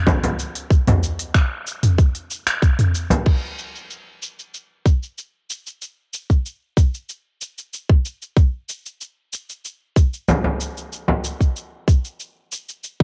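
Recorded at home on cassette with light reverb, this excerpt from a longer downtempo piece has a warm, hypnotic character at 94 BPM in a straight 4/4. A tight, tape-warm electronic kick sits up front alongside an organic electronic drum kit of smooth low-pass-filtered hi-hat, finger snaps, shaker, toms and crash cymbal. A deep, close acoustic frame drum struck with hard hands plays from the start until 3.2 seconds and returns briefly at 10.3 seconds.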